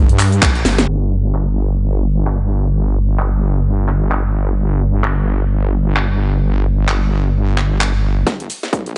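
Swaggering and gritty, this bass house excerpt in G minor moves at 130 BPM with a 16th-note swing, driven by a heavy, detuned sawtooth wobble bass with tube saturation, chorus and sidechain pumping under a long filter sweep from 0.9 to 8.3 seconds, while a tape-warm house kit of cracking snare, handclaps, hi-hat and cabasa sits up front and an overdriven, punchy electronic kick hits a band accent at 0.4 seconds before returning with a drum fill at 8.3 seconds, all in a dry mix.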